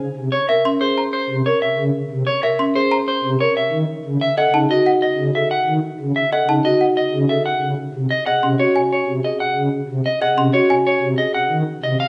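A slightly broken-up, picked electric guitar carries the melody up front in this hypnotic, bright minimalist classical pattern piece at 185 BPM in 6/4. Beneath it, shimmering, soft string-celeste organ chords move from Dbm6 through A6 to Ab7sus4, while a woody, vintage, band-limited rosewood marimba and a dry, boxy, mellow rubber-mallet trough xylophone play arpeggios, all in a wet recital-hall reverb.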